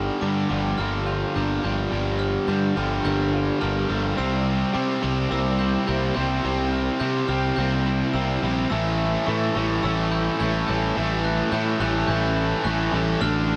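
A straight 4/4 pulse drives this melancholic, brooding rock excerpt, which builds throughout its 13.6 seconds over a Gm7, C7 and A7 progression. Up front, a double-tracked, cranked stack guitar plays a bright, overdriven picked riff, anchored by a punchy fuzz bass with a direct, amped grit. Behind them, a clean, compressed twelve-string electric guitar and a sparkling, bell-like glockenspiel struck with hard plastic mallets both play arpeggios through analog delay, all set in a light reverb.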